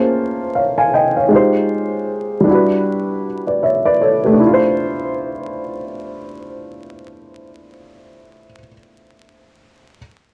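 A dark upright piano opens this reflective, nostalgic hip hop excerpt, its woody, mellow tone sitting up front with a short sustain as it moves through Bbm9, Fm9 and Em9 over a swung sixteenth-note feel. At 4.4 s the harmony settles onto Dm9 as a new section begins. The dry, gritty recording carries vinyl crackle and a moderate studio ambience, giving the cut a worn, lived-in character.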